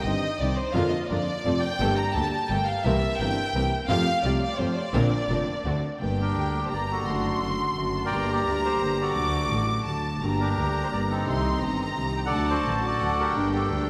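A smooth, bowed violin section opens this dramatic, sultry tango, featured solo until 6.0 seconds with a diffuse ambient delay. Beneath it sit a focused, bowed double bass, a vintage concert grand piano with deep bass, audible action noise and analog chorus, and very quiet, biting string stabs, all moving at 172 BPM in a rubato 3/4 in Bb major. At 6.0 seconds the harmony turns to G harmonic minor, and at 6.2 seconds a reedy, airy bandoneon enters up front with the melody, also trailed by delay, while the whole mix is soaked in a dreamy, lush hall reverb.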